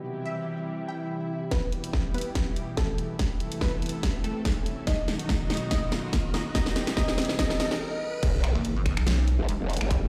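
A lush, thick unison pad holds sustained, chorused chords beneath a punchy, wave-folded pluck melody trailed by tape echo, opening this chaotic, heavy stretch of half-time wobble dubstep, cut from a longer piece, with a swell rising in the background from 0.8 seconds. At 1.5 seconds the build-up begins: a punchy, overdriven electronic kick and a layered dubstep kit, with a huge snare, hi-hat, finger snaps and crash cymbal, arrive prominently and play a fill, while a riser sounds in the background. The pad pumps with sidechain through chords of E minor, A minor, B and C, and the pluck melody stops at 7.8 seconds for a brief stop before the drop. At 8.2 seconds an impact lands with a saturated, growling bass whose formant-filtered wobble sits at the front of the mix, soon joined by a pulsing, detuned sine wobble bass, both chorused and overdriven. Light digital ambience and a large studio reverb wrap the sound, which comes across as played on a big sound system in a bare room.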